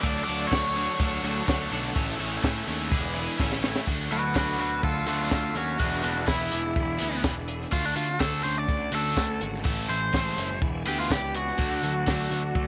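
A straight 4/4 beat at 125 BPM drives this jangly, wistful indie rock excerpt in D lydian. A dry, forward cocktail drum kit of punchy kick, high-tuned snare, hi-hat and dark ride cymbal sits over a fuzzy, overdriven picked bass, with a very quiet, crisp group handclap from 0.5 to 3.5 s, while a compressed twelve-string electric guitar with lush chorus sits in the background and a high-gain distorted guitar plays a riff over a shimmering vintage string machine's soft, sustained violin chords. Up front, a crunchy overdriven guitar carries the melody with slapback echo and breaks into a solo at 3.9 s after a drum fill, as the chords move through Dmaj7, Amaj7 and E7 in light studio reverb.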